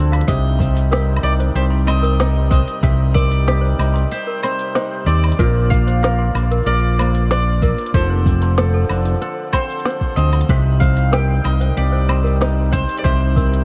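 Folktronica excerpt at 94 BPM in C dorian, delicate and intimate, where a bright, picked mandolin carries the melody over ringing, fingerpicked kora arpeggios bathed in diffuse ambient delay, a reedy, breathing harmonium holds sustained chords in the background, a clanky, bell-like toy piano with slightly out-of-tune plastic hammers adds a gritty second line through analog delay, and a dark, round overdriven bass sits up front with a soft electronic kick and an organic electronic kit of woody snare, crisp hats, cabasa and woodblock, all moving through Cm, Bb and F6 in a small, lightly reverberant room.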